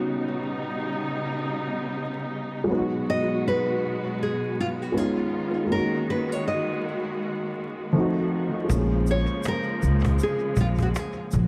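This lo-fi hip hop excerpt moves at a cosy, mellow 80 BPM in 4/4, with a gentle swing on the sixteenths and tuning set to A4 = 439 Hz. From 0.0 seconds, a fingerpicked nylon-string guitar carries the classical-toned melody up front, while a dark upright piano, mellow, vintage and slightly detuned, supplies the accompaniment; both parts are coloured by tape echo. Beneath them, a bowed studio string section holds lush sustained chords with vibrato, portamento and a smooth top, moving through a jazzy progression that opens on D#7alt and reaches A#m7. At 8.7 seconds the rhythm section arrives: a gut-string upright bass plays thumpy pizzicato up front, a woody cajon with faint snares and soft hands sits close and dry in the background, and a grainy, bright egg shaker adds a light texture, with tape echo on the cajon and shaker. The whole mix is echo-heavy, with light reverb, a small room ambience and a layer of vinyl crackle, before the excerpt ends at 11.5 seconds.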